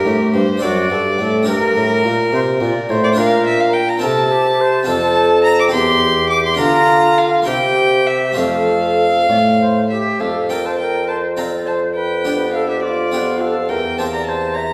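Serene and dance-like, this fragment of a baroque-style sonata movement in 6/8 at 69 BPM sways with rubato, settling into F major from 3.2 s, as an up-front violin with a gut-string tone carries the melody with light vibrato, a pure, distant metal flute sings the second line, a mellow solo bassoon holds the bass, and a brilliant Italian-style harpsichord plucks the accompaniment, all heard from further back in a wet recital hall, before a new section opens at 10.2 s.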